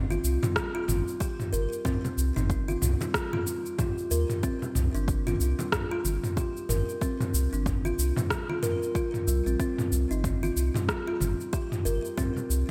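A woody, hollow-toned kalimba rings out thumb-plucked arpeggios through digital delay at the front of this mystical, meditative organic downtempo piece, over a round, mellow sine sub bass and an overdriven, gated deep house kit of rim click, shaker and toms, with a deep, overdriven electronic kick entering at 0.6 s, soft-handed vintage congas in the background, and a very quiet electronic impact in the first 1.9 s, all set in a lush hall ambience with bright 1980s-style digital production as the chords move from Cm to Bb to C5.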